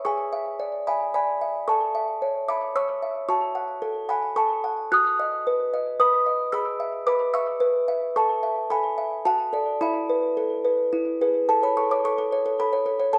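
In a gentle 3/4 at 111 BPM with a straight feel, this short classical lullaby excerpt for music box moves through A major, cut from a longer piece. A single music box plays solo from start to finish, its delicate, tinkling plucked tones ranging from E4 up to F#6 with a mellow, softly boxy character that sits up front in a small, intimate room. A slapback echo trails each note, while light reverb and close, detailed miking bring out the tiny mechanism's detail. The harmony opens on E7/G# and drifts through A, F#m and B/F# before an Esus4 settles onto E, and at 11.5 seconds the music resolves to A as a brief new section begins. The mood is dreamy and innocent, like a keepsake tune playing beside a cradle.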